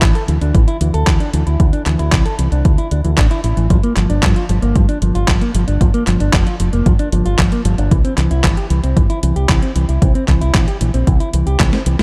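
A dark, warm production sits in a digital ambience on this 12-second excerpt of italo disco, moving at 114 BPM in a straight 4/4 in G dorian with a bittersweet, melodramatic mood. A punchy, tape-warm analog kick drum anchors the groove until 11.7 s. Above it, a clean 12-bit drum machine with a sampler-style character adds handclaps, hi-hat and a medium-tuned snare, its sound roughened by overdrive and set back in the mix. The fingered electric bass stands up front, round and punchy through an envelope filter. A mellow, clean electric guitar plays fingered arpeggios bathed in spring reverb and delay. The harmony moves from Dsus2 to Gm7 at 3.7 s and then C at 7.9 s, and a drum fill closes the passage at 11.6 s.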